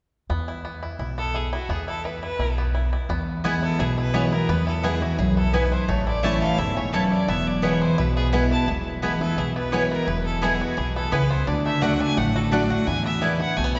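Joyful and lively, this bluegrass excerpt runs at a brisk 172 BPM in straight 4/4 and sits in E mixolydian, moving through E, A and D chords. A twangy, percussive banjo played with fingerpicks carries the melody from the very start, alongside a woody, thumpy upright bass plucked on gut strings and set up front. A clear, biting fiddle with light vibrato joins the melody at 1.2 seconds, its bowed line intense yet smooth on top. At 3.1 seconds the second section opens as a bright, full-bodied steel-string guitar, picked and placed up front, adds accompaniment, and a mandolin with doubled strings soon punctuates the music with woody stabs. The whole ensemble sits in a heavy cathedral-like reverb with a long tail, giving the sound the spacious, softened air of a large hall with a muted top end.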